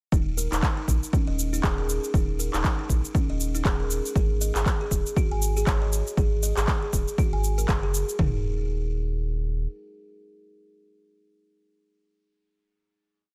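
Afro house with a driving, hypnotic pull, this short piece sets a buzzing, woody kalimba's repeating 16-step arpeggio sequence, roughened by vintage 12-bit sampler grit, sidechain pumping and digital delay, over a deep, round analog bass in a dotted rhythm with a filter sweep. A punchy, up-front four-on-the-floor deep house kit with kick and floor tom, plus a programmed shaker and backbeat handclaps, powers the swung drop until the drums and kalimba fall away by 8.4 seconds, and the bass carries on to 9.7 seconds.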